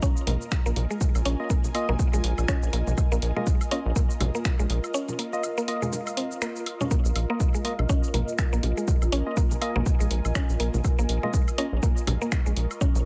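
Clinical and cool, this minimal techno excerpt moves at 122 BPM in Bb minor with a 58% swing on the 16ths, built on an up-front, punchy electronic kick and a rubbery, nasal square bass pumping on Bb1 from 0.3 seconds, while an analog drum machine adds finger snaps, hi-hat and shaker. A woody, mallet-like synth pluck riff carries chorus, tape echo and sidechain pumping, overdriven congas, woodblock and bongos trail delay, and a dark, hollow organ stab enters at 1.4 seconds. An ethereal, airy pad with phaser and ensemble chorus hovers over a Bbsus4 chord, the whole cut sitting in light reverb with a break between 4.9 and 6.9 seconds.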